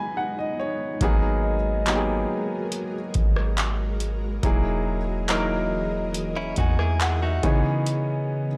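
Contemporary R&B at a slow 70 BPM in G# minor, this moody, longing fragment from a longer piece opens on an intimate grand piano with audible action noise, playing fills over a B6/9 chord while an ethereal, airy pad holds sustained chords under ensemble chorus, tremolo, built-in reverb and sidechain pumping. At 1.0 seconds a booming analog drum machine enters with a deep kick, metallic hats, handclaps and rim clicks, sitting up front beside a boomy, sine-toned 808-style bass with a fast, decaying attack. The harmony moves through G#m9 and Emaj9#11 to C#m9, and a very quiet, bell-like celesta rings a single delicate note early on. Near 6.4 seconds a clean, direct-recorded electric guitar adds brief picked arpeggios with delay as the piano returns to its fills. The mix is dry and close, with the drums, bass and piano all forward.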